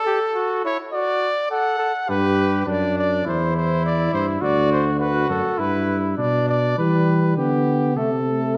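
Two trumpets open this lively, elegant excerpt of a classical brass canzona in G major at 103 BPM, a clear, up-front lead with light vibrato and a soft attack over a mellow, smooth-topped second line, joined at 2.1 seconds by a warm, roomy tuba bass that sounds distant yet sits forward, until at 6.8 seconds the second trumpet gives way to a clean trombone accompaniment, the ensemble framed by a wet recital hall reverb.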